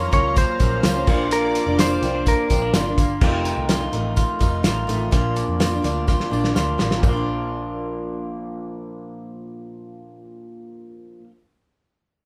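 This bright, youthful stretch of jangly indie pop at 126 BPM in Bb major opens with a twangy, direct-recorded clean electric guitar melody with spring reverb. Beneath it are a woody acoustic guitar, a lo-fi, slightly broken-up electric guitar playing arpeggios, a round, foam-muted vintage bass and a smooth, detuned analog pad with chorus, while the melody guitar drops out at 2.7 seconds. Up front, a thuddy, cloth-damped drum kit with a fat snare and dark cymbals drives the band alongside a jingly tambourine in the background, then plays a fill from 6.1 seconds before stopping at 7.1 seconds, leaving the guitars and bass in a lightly reverberant room.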